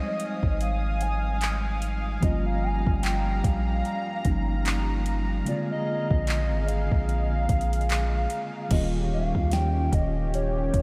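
A long, deep 808-style bass sits up front, its sine tone striking with a fast attack before decaying across a span from Eb1 to Eb2, entering at 0.4 seconds. This is a late-night, longing contemporary R&B piece at 74 BPM in 4/4 with a 16th-note swing, cut from a longer track. A hollow, woody synth lead with a clarinet-like character carries the melody between Db5 and Ab5, its soft attack and vibrato dressed in chorus and delay. Beneath it, a mellow tine electric piano plays clean accompaniment through its built-in speakers. A shimmering, retro pulse-width pad holds sustained chords with sidechain pumping. The smooth drum kit, which comes in at 0.2 seconds, is electronic and up front, with a soft kick, fat snare, metallic hats, handclaps and crash cymbal re-recorded in a large room. The harmony moves through Fm7, Gm7b5 and Bb7 before shifting to Eb7 at 8.7 seconds, and a huge ambient reverb soaks the mix in a dreamy haze.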